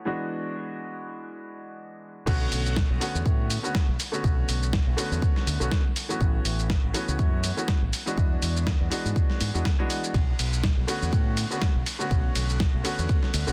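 Nu-disco with a sleek, groovy mood, cut from a longer piece and built on a swung sixteenth-note feel in 4/4. A clear, worn grand piano opens alone under a filter sweep, its chords pumping against the sidechain and trailing dub echo as it moves from E7 toward the drop at 2.3 seconds. There the band arrives together: a bright fingered electric bass with an envelope filter, a punchy, tape-tinged electronic kick that sits forward in the mix, and a gritty, overdriven sampler-style soul kit of snare, hi-hat, ride, shaker and crash, re-recorded in a small room. The harmony cycles through Bm7, A6 and E7 before returning to Bm7 at 10.1 seconds, with the piano continuing its accompaniment above the groove. The kick drops out at 13.2 seconds, just before the other parts end at 13.5. A digital ambience surrounds the mix, and the dense, heavily limited modern master carries a low-pass filter.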